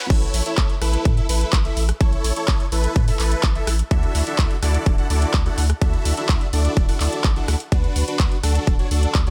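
A dense, compressed supersaw riff opens this powerful, euphoric festival progressive house drop at 126 BPM, its huge, detuned sawtooth stack pumping against the sidechain and trailing dub echo, while a deep, saturated sub bass, a punchy overdriven electronic kick up front and a big-room kit of handclaps, rim clicks, metallic hats and crash cymbal drive through chords of A, Dadd9 and Bm/D in a dry, filtered mix.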